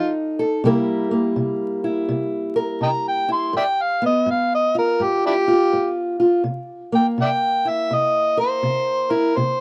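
A loping swung 4/4 groove carries this swaggering, gritty cut from a longer acoustic country blues piece, where an amplified, overdriven harmonica takes a jazz-style solo up front from 0.0 to 6.4 seconds with light vibrato, tongue slaps and scooped notes over a dark, boxy fingerpicked parlour steel-string guitar, all captured in a dry, close small-room sound of 1970s vintage with vinyl crackle.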